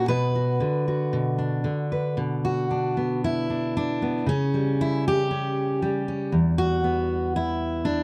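A straight 4/4 pulse at 116 BPM carries this wistful, intimate folk excerpt in B minor, where a solo fingerpicked steel-string acoustic guitar with a full-bodied jumbo tone and audible finger squeak sits up front in a dry, close 1970s-style studio sound with moderate booth ambience, ranging from E2 to B4 as it moves from Bm through C#(b5, omit3) at 4.3 seconds to Em at 6.3 seconds.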